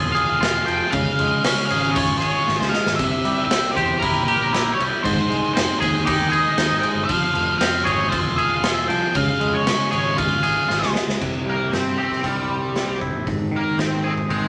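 A clean, twangy electric guitar riff with a phaser opens this dark, mysterious psychedelic rock excerpt, joined from the start by a round, punchy fuzz bass with overdrive. An octave-fuzz lead guitar enters at 0.1 seconds, its picked, distorted melody run through wah, and a raw garage drum kit follows at 0.2 seconds with crash cymbal, hi-hat, snare and a punchy kick. The drums sound saturated and gritty in a bright stone room that pumps, sitting up front with a rolled-off top. At a straight 117 BPM in 4/4, the music moves through Fm, Db, C and Ab in C phrygian dominant, with drum fills marking the turns, the second arriving just before a new section begins at 11.2 seconds. Moderate studio reverb gives the whole band a shared room sound, and the fragment stops mid-flow as it was cut from a longer piece.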